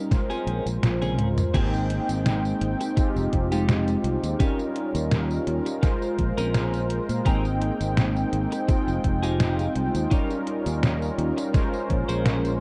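Nostalgic and woozy, this vaporwave piece drifts in a loose swung 4/4 over a looping Bbm9, Abmaj9, Fm9, Eb9 progression, accompanied by a round, detuned sawtooth synth brass with chorus, delay and vibrato sitting up front. A clean, compressed electric guitar picks a riff through a gritty 12-bit sampler haze with chorus and delay, while a bright fretless electric bass with tube saturation enters at 0.5 seconds. An overdriven, thumpy electronic kick and a detuned 8-bit drum machine with a medium-tuned snare, hi-hat, tambourine, toms and crash sound crunchy and close; the kick drops out from 0.8 seconds for a brief drum fill before the main groove settles in at 1.5 seconds, all within a dark, dry mix.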